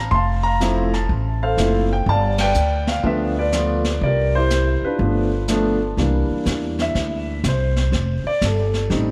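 A relaxed, playful jazz piano trio excerpt opens with concert grand piano and pizzicato upright bass sounding together from the start, swinging in 4/4 at 123 BPM. The piano carries the melody up front, intimate and natural with audible action noise, deep bass and long sustain, touched by a subtle chorus and a diffuse ambient delay. The upright bass sits close as well, woody and growly with a thumpy steel-string tone, while the brushed drum kit enters at 0.1 s from further back, roomy and distant, with dark cymbals, a high-tuned snare and a boomy kick, its top rolled off. The harmony moves from a rootless Dm7 through G7 and C7 before settling on F, with a band accent at 2.3 s. From 6.0 s the grand piano takes a solo that runs to the end of the cut, all of it set in a dreamy mix soaked in plate reverb.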